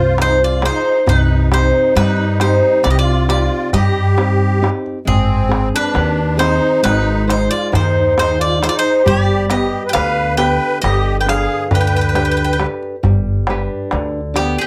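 A Greek folk band opens at once with bouzouki, musette accordion, nylon-string guitar and upright bass, the darbuka joining at 0.2 seconds, in a melancholic, reflective 9/8 at 135 BPM counted in eighths, with a straight feel in G phrygian dominant. The picked bouzouki carries the melody up front, its metallic double strings, some doubled at the octave, ringing between G4 and G5. Beneath it, the accordion's reedy, shimmering musette tuning supplies a close-miked, dry second line, while the fingerpicked classical guitar accompanies and the woody pizzicato upright bass, strung with steel, sits prominently at the bottom. The darbuka's clay shell and natural skin give a large, deep, vintage sound under soft hands. The harmony moves from Fm through Cm and Ab to G, a new section arrives at 13.0 seconds, and the bass stops at 14.5 seconds just before this fragment of a longer piece ends, captured with light reverb and close, detailed microphones.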